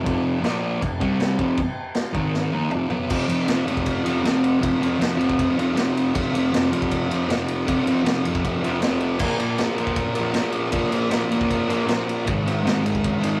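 A double-tracked fuzz guitar sits up front, picking a distorted riff through Bb5, F5, C5 and Ab5 chords in this rowdy, swaggering garage rock excerpt cut from a longer piece. Beneath it, an acoustic vintage drum kit plays kick, snare, toms, ride and crash in a straight 4/4, its sound gritty and mid-forward with dark cymbals, a punchy kick, a medium-tuned snare and a rolled-off top. A drum fill from 2.3 to 3.1 seconds carries the music out of the short opening section into a longer second section that runs to the end. The whole take has the rough feel of a rehearsal-room recording, with moderate room ambience and warm saturation.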